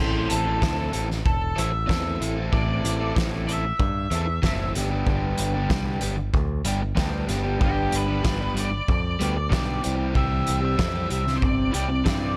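The fuzz-toned lead guitar, an overdriven, double-tracked rhythm guitar and a bright, direct picked electric bass all sound together from the start, and the loose, acoustic drum kit joins at 0.3 seconds. This wistful yet carefree indie rock passage, cut from a longer piece, moves at a straight 94 BPM in 4/4 and is tuned to A4 = 441 Hz. The compressed rhythm guitar sits up front playing a riff, while the picked lead carries the melody in a distorted, octave-fuzz voice. The drums are also up front, with a fat snare, a boomy kick, hi-hat and a pumping studio room sound. The chords move from Am to G at 4.7 seconds and to C at 9.8 seconds, and light studio reverb gives the mix a sense of space.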